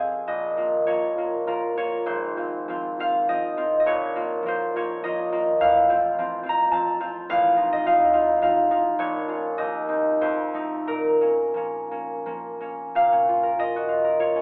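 Classical solo concert harp in a rubato 3/4, mysterious and gentle, its warm, fingerpicked, ringing tone sitting up front and spanning from low Ab1 to high Bb5 across a brief excerpt cut from a longer piece, bathed in a wet recital-hall reverb yet filtered through a thin telephone sound, with minor-key harmony that keeps returning to its home chord before a new section begins at 13.0 seconds.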